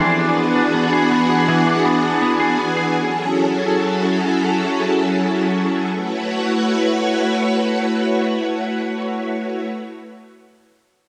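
The string machine's violin voice stands out most, holding shimmering, sawtooth-edged sustained chords with a slow attack and a bright ensemble chorus from 0.0 to 9.7 seconds. This is a blissful, floating dream pop passage cut from a longer piece, moving at 81 BPM in a straight 4/4 in A major, tuned to A4 = 442 Hz. A clean, picked semi-hollow electric guitar plays warm arpeggios up front with analog chorus and tape echo, stopping at 3.5 seconds. The harmony moves from E7 to F#m7 at 3.0 seconds and settles on A6 at 5.9 seconds, where a new section begins. A moderate spring reverb and an echo-heavy mix give the whole a drifting, vintage glow.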